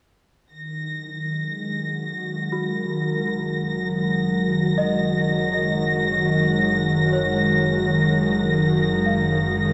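Luminous and warm, this slow ambient passage in F# major at 62 BPM, cut from a longer piece, opens on breathy, chorused pad chords and a dark, woody violin section with vibrato up front, while a round analog bass fades in beneath; a warbling, chorused analog drone joins at 1.5 seconds and delicate, bell-like celesta arpeggios with diffuse delay enter in the background at 2.5 seconds, all suspended in a huge, wet ambient reverb.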